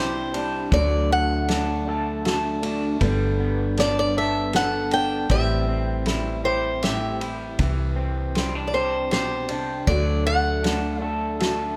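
Opening on a boxy, up-front picked ladder-braced acoustic guitar carrying the melody over a small, fingerpicked nylon-string guitar, a slightly broken-up, lo-fi electric guitar playing arpeggios with harmonic tremolo, and a round, woody fretless bass, this hopeful, nostalgic folk-pop ballad in 3/4 at 79 BPM brings in a distant, roomy indie drum kit at 0.3 s, with its fat snare, punchy kick and dark ride cymbal, as light reverb colors the chords moving from Cadd9 and D through Gadd9 and Am7.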